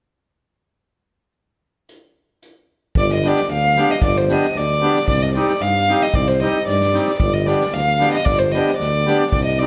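Restless and virtuosic, this Balkan wedding-band folk passage moves at 113 BPM in a straight 2/4, tuned slightly high to A4 = 443 Hz, and is cut from a longer piece. An acoustic drum kit opens alone at 1.9 seconds, its hi-hat, tight kick and medium-tuned snare played with bundle sticks and sitting distant and roomy in the background. At 3.0 seconds the band arrives over a G chord, moving to C minor and back to G. A rich, intimate violin carries the melody up front, played sul tasto with an airy bow, soft attack and light vibrato. Beneath it a warm tuba takes the bass in a smooth, classical style, and from 3.2 seconds a reedy, hollow accordion fills in the accompaniment. The whole band plays live in one large studio room, bathed in a wet reverb.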